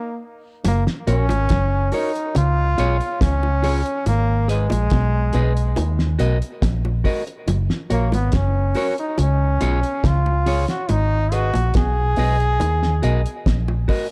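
Warm and uplifting, this roots reggae passage, cut from a longer piece, opens with a bright trombone singing the melody alone at 0.0 seconds, its scooped notes and light vibrato sitting up front in a pop style with a trail of tape echo. At 0.6 seconds the band falls in: a cloth-damped, thuddy drum kit with a fat snare, tight kick, hi-hat and a rolled-off top, alongside low-tuned, round bongos tucked in the background. Joining at 0.7 seconds, a vintage, foam-muted fingered bass anchors the low end, dark, amped and prominent in the mix. An electric guitar through an envelope filter picks a twangy riff in the background, bathed in spring reverb, while a clean, fingered electric guitar joins at 1.1 seconds with a dusky accompaniment touched by tape echo. The progression cycles twice through F#, C#, G#m and D#m in a small room ambience, with a dark, warm production shaping the whole passage.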